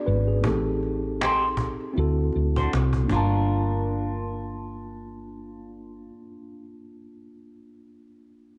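Smooth and soulful, this short neo-soul and R&B excerpt moves at 79 BPM with a swung 16th-note feel over Am7b5, D7 and Gm7, carried by a mellow, clean tine electric piano heard through its built-in speakers that plays throughout. A woody fretless bass sits up front with a round, growly, hollow-body tone and ensemble chorus, while a vintage-sounding cajon played with hard hands and faint snares drops out at 3.3 seconds. An electric guitar through a small old amp enters at 1.2 seconds as a slightly broken-up, picked second line with phaser, all set in a dark production with light digital reverb.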